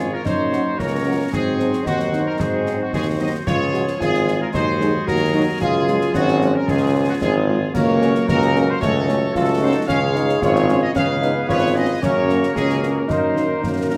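Military-style march for wind band in a straight 2/4, spirited and rousing, cut from a longer piece. A dark, distant trumpet section carries the melody, while a woodwind section with a clear tone and light vibrato and a mellow solo euphonium play second lines. A very quiet, smooth-topped French horn section adds accompaniment, a trombone section holds sustained chords in the background, and an up-front tuba with a vintage tone anchors the bass. Concert snare drum, concert bass drum and clash cymbals enter at 0.3 s, close and dry with bright cymbals. A moderate recital hall reverb gives the trumpets and woodwinds a roomy classical sound as the harmony moves through chords such as Gb, Ab7 and Db.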